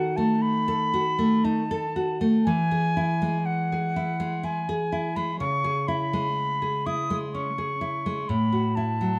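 Serene and warm, this short passage cut from a longer romantic duo for flute and classical guitar unfolds in a rubato 3/4 at 58-64 BPM in E major, tuned to A4 = 444 Hz, with the concert flute singing a pure, straight-toned, tongued melody up front while the fingerpicked nylon-string guitar gives full-bodied, deep accompaniment through B7/D#, E, C#m7 and F#m7/A, both captured by close, detailed microphones in a moderate scoring-stage reverb.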